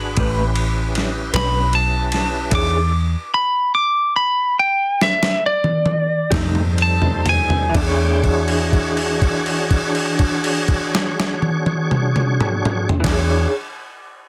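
A dense, heavily limited and dry mix carries this gritty, soulful slow blues fragment in 12/8, where a dark, slightly broken-up lead guitar solos up front until 7.7 s as the music slows and the drums play a fill, over a lightly overdriven tonewheel organ with slow rotary speaker and chorus vibrato, a round, punchy, foam-muted fingered bass, a lo-fi tremolo-treated accompaniment guitar through a small old amp, and a thumpy, compressed sampler-style drum kit, before a held note rings from 7.7 to 13.0 s.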